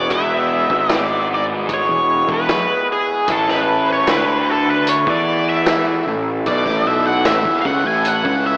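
A dark, up-front octave-fuzz lead guitar opens this hazy, hypnotic psychedelic rock excerpt with a solo drenched in wah, distortion and analog delay, while a reedy, nasal, breathing harmonium holds sustained chords, a double-tracked, bright fuzz guitar churns a phaser-tinged riff, and an overdriven picked bass growls underneath. A gritty, saturated vintage drum kit with a punchy kick enters at 0.1 s and sits in the background at 76 BPM in straight 4/4, as the harmony moves from E to A5 at 3.3 s. The whole mix is soaked in a long plate reverb with a dreamy, AM-radio character.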